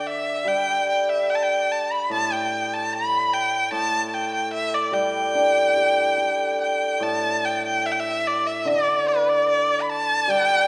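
A clear, bowed erhu carries the melody up front, its smooth, even line colored by vibrato and portamento in this graceful, festive piece of Chinese traditional music, cut from a longer work. A hammered dulcimer accompanies from the lower range with a shimmering, ringing tone, the two playing together in a rubato feel over 2/4 throughout the 10.7 seconds. A moderate concert hall reverb surrounds both parts, and the music moves into a new section at 7.0 seconds.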